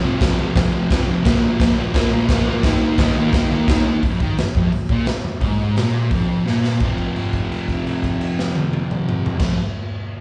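A double-tracked fuzz guitar opens the clip, picking a rowdy riff through F5, Bb5 and Eb5 before shifting to Fmadd11 at 4.0 seconds, its distorted tone thickened by slapback echo. A raw garage drum kit joins almost at once at 172 BPM in straight 4/4, with a punchy kick, medium-tuned snare and a gritty, saturated sampler edge with a rolled-off top and a pumping stone-room sound. A short drum fill leads to a held F5 from 6.8 to 9.4 seconds, all heard as a live gig through the venue's PA with moderate club reverb, cut from a longer piece.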